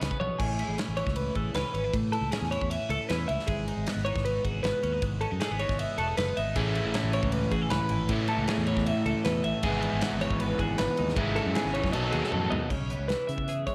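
Bright and wistful, this math rock and midwest emo excerpt moves at 156 BPM in a straight 4/4, cut from a longer piece. Two clean, twangy twelve-string electric guitars run throughout: one carries the accompaniment through a phaser and sits up front, while the other spins high arpeggios bathed in spring reverb. A fingered electric bass with a direct-and-amped tone anchors the low end, and an acoustic studio kit with a medium-tuned snare, tight kick, hi-hat, ride, crash and toms drives the pulse, opening with a fill at 0.2 seconds. At 6.6 seconds a crunchy, double-tracked overdriven guitar riff joins up front, thickening the texture until 12.7 seconds. The harmony drifts through lush extended chords like Amaj9, Emaj9/G# and C#m11/G#, and after a drum fill the passage turns to a new section landing on C#m7, all held in a light, small-room ambience.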